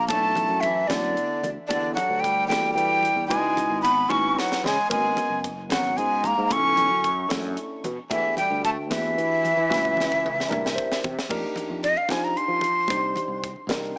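A breathy, reedy jazz flute with vibrato leads this slick, nocturnal electric jazz fusion excerpt at 75 BPM in 6/8, shadowed by a bright, scooped bass clarinet until 11.0 seconds, over growly fretless bass with lush chorus, barky tine electric piano through a phaser, a crisp drum kit with a high-tuned snare and punchy kick, and thin-skinned congas in the background, as chords move from Bm11 through Em11 and C#m11 and the flute takes a solo from 11.3 seconds, all heard with light small-room reverb through a small speaker.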